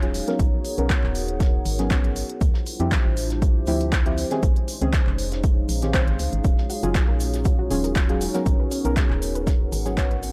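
A punchy, up-front electronic kick drives this late-night deep house excerpt at 119 BPM with a light 16th-note swing, joined by a hollow, organ-like FM bass with tube saturation, smooth-hatted handclaps and shaker from a deep house drum kit, a very quiet acoustic studio kit with a medium-tuned snare, soft nasal chord stabs with chorus and tape echo, a moody detuned analog pad and a warbling, nostalgic lo-fi tape-like pad. The pads, stabs and bass pump to the sidechain over dry, gritty minor eleventh chords from Abm11 through Dm11, Bbm11 and Ebm11, while a gentle, round pluck arpeggio enters at 6.4 seconds before the fade-out from 9.1 seconds.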